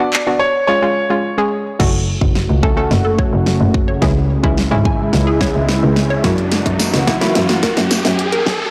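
Dance-pop at 108 BPM in F# minor, bittersweet yet confident, this short cut opens with a clear, worn grand piano melody and a hollow, nasal square pluck over punchy, layered electronic drums, which drop out briefly before a build-up starts at 1.8 s with a drum fill, a filter sweep and a bowed, earthy double bass. A lush, thick unison pad with chorus and sidechain pumping joins at 2.4 s, a bright, bouncy pluck arpeggio with delay sits in the background, and an electronic riser climbs from 3.9 s while a jingly tambourine adds sparkle late on. The mix is blown-out and overdriven under light digital ambience, with chords moving through F#m, C#m and F#7.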